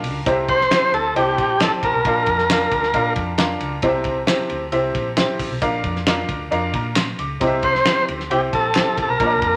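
Uptempo 1960s-style soul with an uplifting, danceable feel, built on a clear, woody upright piano with a slightly detuned edge, a round, hollow-body fingered electric bass and a cloth-damped, thuddy drum kit with a fat snare and dark cymbals, all running through the whole 9.6-second excerpt. A lightly overdriven tonewheel organ carries the melody up front with vibrato and key click, joined in the background by a bell-like glockenspiel struck with soft plastic mallets playing a second line, the two sounding from 0.5 to 3.1 seconds and again from 7.6 seconds. Finger snaps sit behind the groove from 0.7 to 8.8 seconds as the chords shift between C and Bb, all set in a moderate studio reverb.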